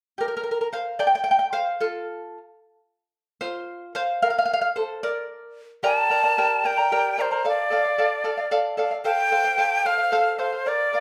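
A lone acoustic charango opens at 0.2 seconds, its fingerpicked double strings, some doubled at the octave, giving a shimmering, up-front accompaniment. This earthy, wistful Andean folk piece moves at 74 beats per minute in a straight 6/8, counted in dotted quarters, with harmony passing from Gmadd11 through F5 to Bb. At 5.8 seconds an end-blown cane quena takes up the melody, its tone breathy, reedy and close-miked, with tongued notes and vibrato placing it squarely in front. Beneath it the charango continues as the chords shift through Gm, Dm and F. The ensemble sounds like a band playing live together in one large studio, wrapped in a wet reverb that lingers just under a second, until this cut from a longer piece ends at 11.0 seconds.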